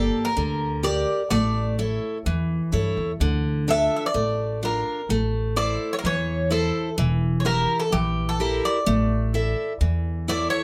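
A moderate small-room reverb surrounds this close, up-front Greek folk band, heard in a short cut from a longer piece that plays in a straight 4/4 throughout. The Greek bouzouki carries the dramatic, intense melody with a bright, metallic ring from its picked double strings, some doubled at the octave, over a full-bodied picked steel-string dreadnought guitar and a dark, woody pizzicato upright bass. Together they move through Gm, A, Dm, Am and Edim before landing back on A.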